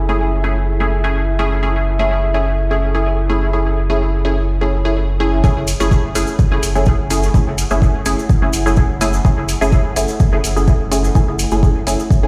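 Meditative and cavernous, this dub techno excerpt at 126 BPM in F# minor begins with a moody analog pad in the background, a round sine sub bass, a muted, detuned chord stab carrying dub echo and a faint, flickering granular texture; a deep, tape-toned kick and a distant, bright cabasa arrive at 5.4 s as a filter sweep starts moving across the stab, filtered electronic hi-hats follow at 5.7 s, and the whole mix sits in a stone room reverb.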